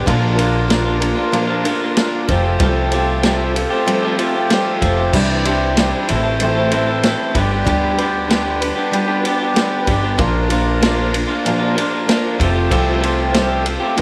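Folk rock and heartland rock with a jangly, open-road mood, cut from a longer piece and moving through Bb, Fadd9, Cadd9, Am and G. An electric guitar through a small old amp plays a slightly broken-up, compressed riff up front with lush chorus. Beneath it sit a picked steel-string acoustic guitar, a woody pizzicato upright bass and a vintage drum kit with a punchy kick and dark cymbals, while a reedy accordion holds sustained chords in the background under light reverb and studio ambience.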